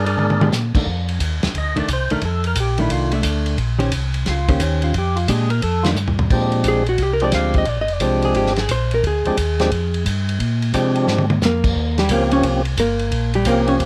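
Soul jazz organ trio in a swinging, bluesy mood, where a fat, lightly overdriven tonewheel organ with percussive key click and slow rotary speaker takes the opening solo over a round, dark organ bass line, a snug small-room drum kit with a tight kick and rolled-off cymbals adding short fills, and a clean, compressed hollow-body jazz guitar that comps before taking over the solo at 6.3 seconds in this excerpt from a longer piece.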